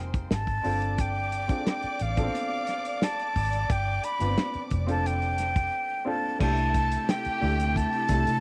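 Lush 1970s-style soul with a romantic, smooth mood, this passage is cut from a longer piece and moves in a straight, unhurried 4/4. A breathy concert flute carries the melody up front, close-miked with a straight tone and soft attack. Beneath it, a bowed studio string section adds an expressive second line full of vibrato and portamento. A mellow baby grand piano with audible action noise and short sustain plays the accompaniment, while a foam-muted fingered electric bass sits round and amped up front, and a dry, muffled, lo-fi drum kit supplies kick, medium-tuned snare, hi-hat and dark crash cymbal. After a break from 5.7 to 6.4 seconds, a silky, warbling string machine with ensemble chorus enters in the background at 6.7 seconds with slow-attack sustained chords, all in a light reverb and studio ambience.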